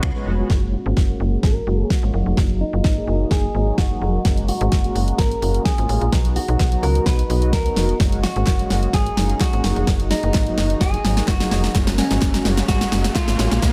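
Set in a digital ambience, this dance-pop passage from a longer piece feels summery and euphoric, riding a straight 4/4 groove that acts as one continuous build-up, with a drum fill and a filter sweep running through it. An up-front deep house drum kit drives it with a deep kick, fat snare, hi-hat, shaker and finger snaps, while an equally forward slap-like FM bass adds a snappy, metallic attack and sidechain pumping. Mellow synth brass supplies a brassy, round, detuned accompaniment with chorus, vibrato and pumping of its own, over a very quiet granular cloud pad that drifts in blurred, evolving sustained chords. The melody comes from a slightly broken-up, compressed electric guitar, picked and softened by a low-pass filter and digital delay. A crisp group handclap joins in the background at 8.5 seconds, and a faint electronic riser enters at 10.9 seconds, as the harmony circles F#add9, D#m and B.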